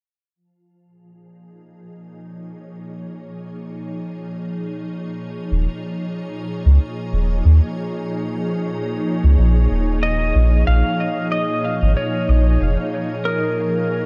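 Ambient dub at 93 BPM in a gently swung 4/4, spacious and meditative, this fragment of a longer piece fades in on a pure, detuned organ-like pad sustaining Bbm7 and then Eb9sus4 through ensemble chorus and its own reverb, while a deep, round sub bass arrives at 5.5 seconds and a clean, twangy lap steel enters at 10.0 seconds with slide, volume swells and dub echo, inside a light digital ambience.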